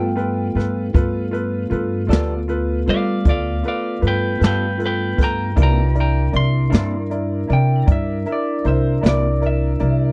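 A slow 12/8 blues rolls along at 52 dotted-quarter beats per minute with a straight, swaggering and rollicking feel in G mixolydian, moving from G9 to C9 at 5.6 seconds in this short cut from a longer piece. A brushed jazz kit sits up front from 0.2 seconds, with a dark, smooth snare and a boomy kick alongside hi-hat, while a pizzicato upright bass with steel strings gives a woody, thumpy low end just as prominently. A clear upright piano with audible action noise and long sustain plays accompaniment, and a mellow, flute-like tonewheel organ holds soft sustained chords through a slow rotary speaker with a touch of key click. Two slightly broken-up, picked and compressed electric guitars through a small old amp fill out the middle: one adds a high second line, and the other, more lo-fi, comps underneath with harmonic tremolo. A lightly driven lead guitar carries the melody from 2.9 to 7.9 seconds with slapback echo. 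The sound is dry and close, in the manner of a 1970s studio recording with little reverb.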